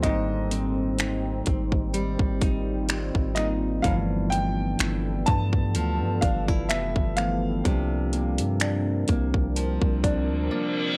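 Contemporary R&B with a dreamy, romantic mood, where a clear, worn concert grand piano carries the melody over a bell-like tine electric piano, a dark, detuned ambient pad with chorus, reverb and sidechain pumping, and fingerpicked nylon-string guitar arpeggios through tape echo, anchored by a deep, mellow 808-style bass and an up-front trap kit of finger snaps, metallic hi-hats and a hard-clipped kick, before an electric piano fill at 10.0 seconds and a reverse cymbal from 10.3 seconds close this gritty, dry-sounding excerpt.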